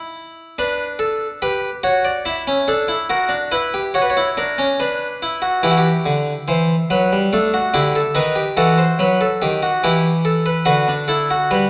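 A bright, plucked harpsichord sits up front in a wet recital-hall reverb, its single set of strings in the Flemish style ringing through a church-like space. This baroque-style three-part fugue in E minor moves at 71 BPM in 3/4, driving yet contemplative, with the solo harpsichord ranging from D3 to E5. Cut from a longer piece, it opens on a passage built around B minor and F#7 harmonies before turning at 5.6 seconds to a second section that circles between E minor, A5 and B7, returns to E minor and closes on B minor over D.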